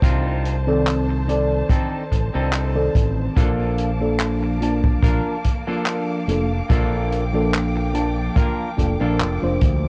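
A bright, up-front fingered electric bass anchors this hazy, woozy vaporwave clip with a punchy kick drum, while a vintage kit adds handclaps and rolled-off hi-hat, a clean, picked semi-hollow guitar riff shimmers through lush chorus and tape echo, a mellow, round FM electric piano enters at 0.7 seconds through phaser, chorus and echo, and a soft, bowed string section holds lush vibrato chords over a move from Cm69 to Bbmaj7, all steeped in worn cassette warble and pitch drift.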